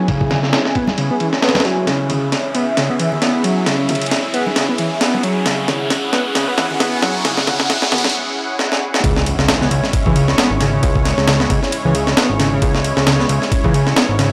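A screaming, guitar-like overdriven synth lead grinds out a gritty riff in C# minor, its distorted sawtooth tone carrying vibrato and tape echo, over a lush, detuned unison pad of sustained chords that pumps with sidechain and shimmers with chorus and phaser. This funky, swaggering breakbeat excerpt at 134 BPM swings its 16ths, with an up-front, compressed sampler-style kit of thumpy kick, high-tuned snare and muffled ride driving a filter-swept build-up, while soft-handed ringing congas sit in the background until 8.1 seconds and an electronic riser and impact hover behind. At 9.0 seconds the drop lands and a fat, saturated analog bass enters with a plucky, detuned attack, all set in a dry, gritty hardware sound with light digital ambience.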